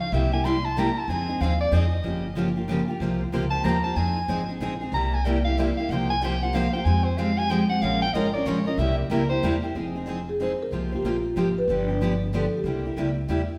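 Bittersweet and fiery, this brisk 187 BPM jazz manouche waltz in F minor opens with a smooth, vibrato-laden soprano saxophone solo up front over a bright dreadnought guitar, a boxy parlour guitar in the background and a thumpy, woody gut-string upright bass, before a padauk marimba takes the melody at 10.3 seconds, all caught live in a stone room with a 1.3-second reverb.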